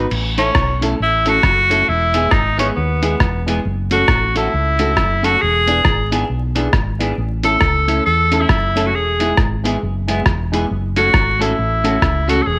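Cheerful and joyful, this short cut from a longer ska piece moves at 136 BPM in 4/4 with a swung eighth-note feel, cycling through A, E, F#m and E7. A clear, vintage-toned tenor saxophone carries the melody up front from 0.4 seconds, its scooped notes giving the pop-style solo line a bit of character. Beneath it, a round, dark fingered electric bass sits close and direct, while a lo-fi sampler-style drum kit, compressed, pitched down and muffled, with a thumpy kick, rim clicks, hi-hat and crash, sounds as if re-recorded in a small room. A bright, twangy clean electric guitar, treated with phaser, plays the accompaniment, and a dark, woody upright piano adds mellow stabs with audible action noise for an intimate, vintage touch. Light reverb and digital ambience surround the band, and a layer of vinyl crackle runs through the whole clip.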